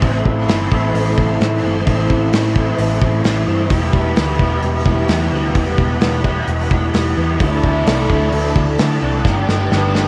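Dreamy and hazy, this shoegaze and dream pop excerpt moves through Am, Em, Dsus2 and Gadd9, with a raw, overdriven garage guitar riff bathed in ensemble chorus over a round, dark hollow-body bass and a loose, punchy indie drum kit that sits up front in a small, pumping room. In the background, a biting overdriven guitar riff trails reverse reverb, a jumbo twelve-string acoustic guitar picks shimmering, octave-doubled arpeggios through lush chorus and tape echo, and a vintage string machine holds bright, slow-attack sawtooth violin chords with a moving notch. Cassette tape colours the guitars, strings and drums of this home recording, and the drums play a fill from 9.3 seconds.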